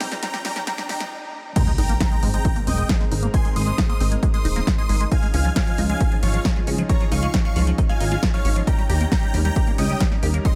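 Soaring and uplifting, this trance passage opens on a short build-up where a dry, overdriven analog drum machine plays a fill of snare, hi-hat and crash, a riser sounds in the background, and filter sweeps run over the huge, detuned supersaw lead and the squelchy, resonant acid bass before a brief stop at 1.1 seconds. At 1.6 seconds the drop lands with an impact and a tape-toned, layered electronic kick up front, beside the funky, wave-folded plucky bass, while a lush, warbling vintage pad holds sustained chords under the bright, phased supersaw melody. Sidechain pumping runs through the lead, pad, both basses and the drum machine's hats and cymbals, with dub echo trailing the lead and the mellow acid arpeggios, in a dry, high-passed mix.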